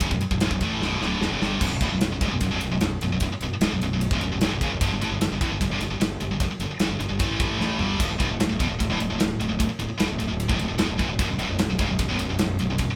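Driving straight 4/4 at 150 BPM, this heavy metal excerpt in B minor feels heavy and epic, cut from a longer piece. A modern studio drum kit sits up front with a tight kick, a medium-tuned snare, crash and ride cymbals and toms, its acoustic sound caught in a small room, and it plays fills from 0.8 to 1.6 seconds and again at 7.6 seconds. A scooped, high-gain guitar carries the riff between B1 and A3, its bright, picked, double-tracked distortion pushed up front. Beneath it, a fingered electric bass growls between B0 and A1, its fuzzy overdrive running direct and amped. After an opening Bm, the chords move through B5, G5 and D5 before returning to B5, all under light reverb that gives the sense of a band playing live in one room.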